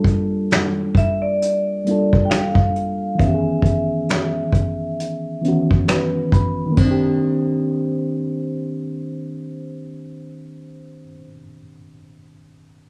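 A reedy electric piano with cassette-tape colour and a punchy-kicked, fat-snared brush kit of snaps, hi-hat and splash open this melancholic, nostalgic lo-fi hip hop excerpt at a slow, swung 67 BPM under a filter sweep, before a metallic, ringing vibraphone with slow motor vibrato and tape echo enters at 1.0 seconds over jazzy minor-ninth chords, and the drums drop away at 7.0 seconds in the small, moderately reverberant room.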